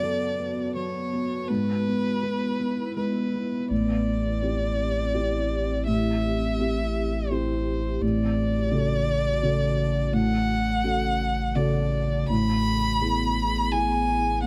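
Intimate and hopeful, this neoclassical piece for piano and strings moves in a rubato three-beat feel, tuned slightly below standard pitch at A4 = 439 Hz. A felt-muted upright piano carries the accompaniment from the opening, its tone soft, mellow and dark with short sustain, thick felt and audible action noise. Above it, a single bowed violin sits up front with the melody, rich and focused with vibrato and a smooth top. In the background, a glassy FM pad holds ethereal sustained chords with a slow attack and long release, colored by ensemble chorus and its own reverb. At 3.7 seconds a warm, round sine sub bass enters on a deep, sustained A, as the harmony settles from Bm7/F# and E/G# onto chords over an A pedal, moving through Cadd9/A and Dmaj7/A to E/A, all within a light reverb as part of a longer piece.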